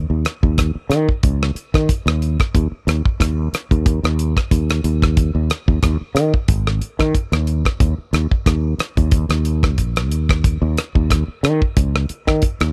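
Riding a lightly swung sixteenth-note feel in 4/4, this funky, soaring electric jazz fusion passage, cut from a longer piece, sets a growly, punchy fretless electric bass with a sustaining, direct-and-amped tone up front from the start against a damped 70s drum kit of hi-hat, tight kick and rim click that enters at 0.2 s with a dry, mid-forward sound and little reverb.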